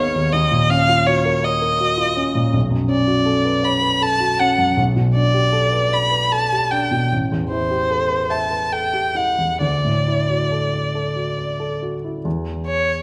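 In a rubato 6/8 drifting between 43 and 55 BPM in dotted quarters, this mysterious, hazy impressionist classical duo, tuned to A4 = 436 Hz, places a single bowed violin up front, its focused, smooth-topped melody sung with vibrato, over an equally close grand piano whose warm, short-sustained accompaniment moves through Ebm9, Bm9, Gadd9/B, Am9 and Dadd9, set in a moderate scoring-stage reverb, before the harmony drops away at 12.3 seconds in this passage cut from a longer piece.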